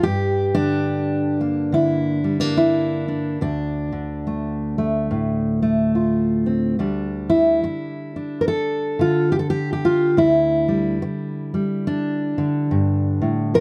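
Swung eighth notes in a slow 4/4 at 71 BPM give this solo folk piece in D minor an unhurried, lilting pulse, its haunting and intimate mood carried by a single fingerpicked steel-string dreadnought. The guitar sounds dark and full-bodied, ranging from D2 up to Bb4 and moving from Gm to Dm at 3.4 seconds before settling on Dsus2 at 6.8 seconds as the second section begins. Close, detailed microphones and very little reverb keep the instrument up front in this brief fragment, cut from a longer piece and tuned slightly above standard pitch.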